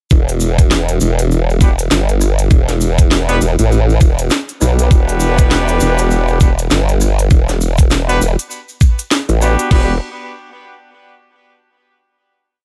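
A formant-sweep wobble bass anchors this funky, playful glitch hop piece, its detuned sawtooth-and-sine tone wobbling up front with chorus and overdrive through modulated phrases of changing wobble speed, over a knocking, broken electronic kick and a layered drum and bass kit with a cracking snare, crisp hats, rim clicks and crash in a swung beat with edits. A grainy tube shaker plays hand-played sixteenths in the background, and from 1.6 seconds a mellow horn section adds sparse, echoing jazz-style chord stabs with light vibrato, octave doubling, 12-bit sampler grit and sidechain pumping. The drop runs to 9.7 seconds before a final chord rings out in a dry, close mix.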